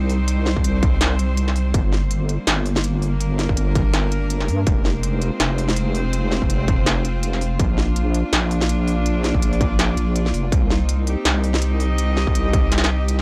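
A deep, dark wobble bass sits up front in this heavy, tense half-time drum and bass excerpt at 164 BPM in C minor, its square-and-sine tone thickened with chorus and tube saturation under a swung sixteenth feel. A rich, earthy cello section holds bowed chords with light vibrato and a biting edge, pumping against the sidechain as the harmony moves from Cm through Gm, Fm and Bb back to Cm. An industrial kit brings a clanging snare and crisp hats from 0.1 s, joined at 0.6 s by a distorted electronic kick, all in a dry, gritty hardware sound with transformer saturation.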